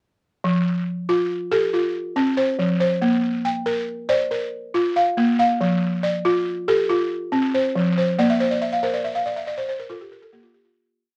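A steady 12/8 pulse at 93 BPM carries this warm, hypnotic piece of West African traditional music, where a solo balafon, woody and buzzing under soft rubber mallets and set up front in light reverb, spins an interlocking ostinato with fast runs over F and Bb in F major, the whole recording wrapped in the warble and pitch drift of worn old cassette tape until a balafon fill closes it in a fade-out from 8.2 to 10.8 seconds.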